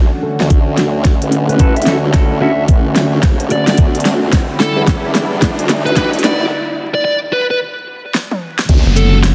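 Swinging at 110 BPM in 4/4, this funky, swaggering glitch hop excerpt builds over Dmaj7 and Em9, with a knocking electronic kick up front, a layered pop kit of fat snare, crisp hats, shaker, toms and crash, a saturated formant-sweep wobble bass, a smooth, detuned analog pad pumping under gritty sampler texture, a dark fuzz lead guitar sent through dub echo and a filter sweep, clean hollow-body guitar stabs in the background, a background riser and downlifter, a break at 6.5 seconds, and a bouncy, rubbery square bass arriving at 8.9 seconds, all under light reverb and vinyl crackle in a dense, heavily limited master.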